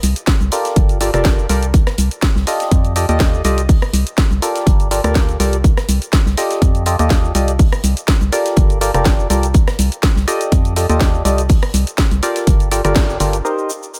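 Energetic yet bittersweet, this piano house excerpt moves at 123 BPM in 4/4 with a light 16th-note swing. An up-front, punchy electronic kick enters at 0.3 seconds, layered with a house kit of cabasa, hi-hat, rim click and a cracking snare, while a very quiet, airy acoustic fusion kit adds hi-hat and a high-tuned snare. Underneath, a hollow, organ-like FM bass sits dark and up front between F1 and F2, pumping against the kick. The lead riff is a mellow, percussive, wave-folded organ stab built from sine, triangle and a noise layer, treated with chorus, phaser, delay and sidechain pumping. Its chords alternate between Gm9 and F13 with gaps between them, and a band accent at 13.0 seconds sets up a final turn to Cm7. The mix is dry and close, with little reverb.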